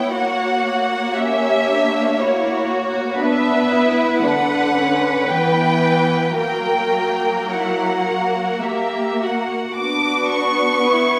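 This excerpt from a slow romantic movement for string orchestra opens with all four muted sections sounding together from the first moment, in a solemn, elegiac 3/4 with a flexible, rubato pulse. The first violins carry the melody high and up front, their con sordino tone dark and veiled, with vibrato and a soft attack. A second violin line sits beneath them, close and lush, while the violas supply accompaniment from further back in the blend. The cellos hold the bass with a light vibrato and a soft attack. The harmony moves from F#7/A# to Bm at 3.2 seconds, then passes through Em and F# before settling back on Bm at 9.8 seconds. A church or concert hall reverb of about 1.6 seconds surrounds the ensemble until the passage breaks off at 11.2 seconds.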